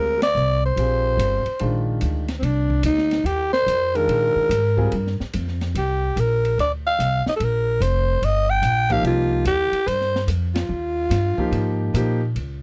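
A dry, close studio sound in a 1970s style, with little reverb, frames this short cut from a longer piece of modal jazz in F dorian, swinging at 145 BPM in 4/4 with a cool, spiritual mood. Up front, a growling alto saxophone carries the melody from C4 to G5, its tone raspy and breathy with subtone and a light vibrato. The upright bass sits forward too, woody and thumpy on steel strings, plucked from F1 to Bb2 across the whole passage. A concert grand piano with audible action noise and a long sustain plays accompaniment from 0.0 to 4.9 seconds, drops out, then returns at 8.9 seconds. Further back, an open acoustic drum kit with dark cymbals, a high-tuned snare and a boomy kick brings in hi-hat and ride, and the band hits accents at 0.2 and 10.5 seconds as the harmony moves from F13sus4 to Ebadd9.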